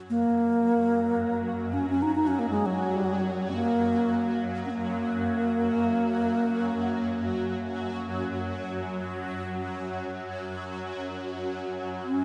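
This excerpt opens with a shimmering ambient pad holding a low drone on F#, its detuned sine layers softened by chorus, phaser and an octave-up shimmer that gives it an ethereal, granular sheen. A moment later, at 0.1 seconds, a bass flute enters with the melody, airy and close-miked, sitting up front with gentle vibrato and a soft attack. The piece is world-tinged meditation music in free time, built on an F# major pentatonic scale, and the mood is peaceful and spacious. The flute's expressive line is carried by shimmer reverb and a diffuse ambient delay, while the pad's slow attack and long release keep it sustained beneath. A lush hall reverb soaks the whole dreamy mix, lending a sense of drifting space across the roughly 12 seconds.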